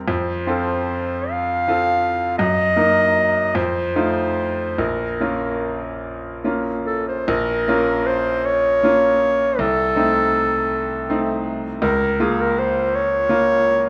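Romantic classical duo for clarinet and grand piano in Bb minor, a yearning, elegiac excerpt in a slow, rubato 6/8 at around 47-57 BPM counted in dotted quarters. The warm clarinet carries the solo melody up front from 0.1 seconds, while the bright, brilliant grand piano accompanies from its low bass up to the middle register, moving through chords such as F7, Bbm and Adim/C. Close, detailed microphones capture both instruments with a moderate recital hall reverb, and the passage shifts into a new section at 7.3 seconds before being cut off at 13.9 seconds.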